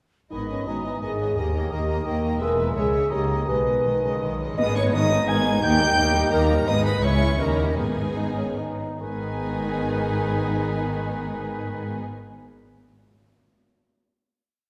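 At 0.3 s the full orchestra sets off together in a restless, urgent G# minor romantic movement in fast 3/4: lush, vibrato-laden violins sing the melody high above a second violin line, mellow clarinet and hollow silver flute doubling the tune, a distant oboe, bassoon counter-melody, rocking viola figures and swelling French horn chords. Dark cellos and double basses carry the bass, while a very quiet cymbal swell and tam-tam strokes shimmer between 2.4 and 5.9 s. A band accent at 4.6 s launches the repeated phrase, which slows from 6.1 s before a final chord at 9.0 s, everything heard from further back in a wet scoring-stage reverb.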